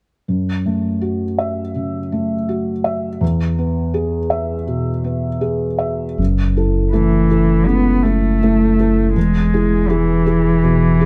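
A felt-muted upright piano opens this reflective, longing neoclassical fragment at 0.3 s, its soft, dark, thick-felt chords moving between F#m7 and E with a rubato sway, intimate and up front in a close, dry, detailed recording. At 6.2 s a round sine sub bass enters with a deep, sustained tone and a fast attack. At 6.9 s a single bowed cello, con sordino and veiled, adds a second line with light vibrato and portamento.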